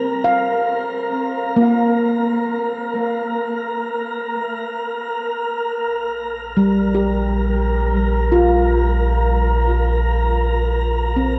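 Dark, warm production steeped in a long shimmering reverb carries this peaceful ambient fragment in free time, tuned to A4 = 443 Hz, where an up-front, ringing handpan of nitrided steel plays meditative, band-limited fingertip arpeggios through a diffuse delay over an airy, breathy wind-like tuned noise texture, and a deep, round sine sub bass arrives at 5.9 s as the harmony moves from Bbsus2 to Bb5.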